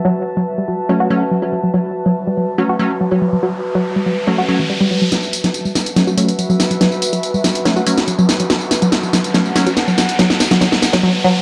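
A dark, warm mix with a moderate plate reverb carries this fragment of driving peak-time techno in F# minor at 142 BPM, hypnotic and intense, sitting on an F#m chord. A nasal, detuned sawtooth pluck plays the up-front riff through tape echo and cassette warble. Beneath it, a nostalgic, slow-blooming pad gives sustained texture, while crisp digital wavetable stabs with a moving notch pass through filter sweeps, and an electronic riser enters at 2.7 s. At 5.1 s a layered electronic kit arrives with a cracking snare, hi-hat and tambourine, re-recorded in a large room, playing a fill across the build-up.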